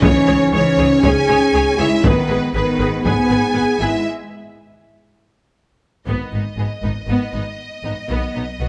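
Cinematic, epic orchestral film score at 119 BPM, relentless and heroic, where lush vibrato violins carry the melody over a second violin line in the background, intense bowed violas, smooth cellos and focused double basses, with dark, distant French horns holding chords until 8.3 s, clear trombones sustaining chords in the background until 4.0 s, and hard-stick taiko drums with a vintage, band-limited edge playing from the start, adding a fill from 5.3 s before stopping at 7.1 s, all moving from C#m to G#m and settling on B in a moderate scoring-stage reverb.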